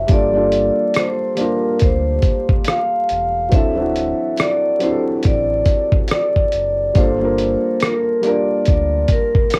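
A gently swung 16th-note groove at 70 BPM in 4/4 carries this reflective, nostalgic lo-fi hip hop fragment in G dorian, where a gritty, compressed sampler-style drum kit with a thumpy kick, hi-hat and rim click sits up front through cassette tape, a deep, sustained sine sub bass with octave and tube saturation holds the low end until 9.1 s, a soft, intimate felt-muted upright piano accompanies through tape and plate reverb over Gm7, D7 and back to Gm7, and a metallic, ringing vibraphone struck with medium hard mallets, motor off, carries the melody in plate reverb, the whole mix set in a small home room dusted with vinyl crackle.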